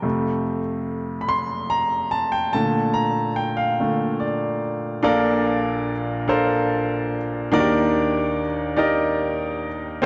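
Gospel in Bb major, this short excerpt features a solo baby grand piano at a slow 48 BPM in a straight 6/8, carrying an uplifting, soulful mood. The piano sounds clear and natural with long sustain, sitting up front and ranging from deep bass notes at Bb1 up to C6. Its harmony moves from F to Bbmaj7 at 2.5 seconds, then settles onto Ebmaj7 at 7.5 seconds, giving the passage a gentle, hopeful lift. The piece opens on one idea and shifts to a new section at 5.0 seconds, running to just past 10 seconds. A generous scoring-stage reverb surrounds the instrument, and the dark production rounds off the top end for a mellow, enveloping sound.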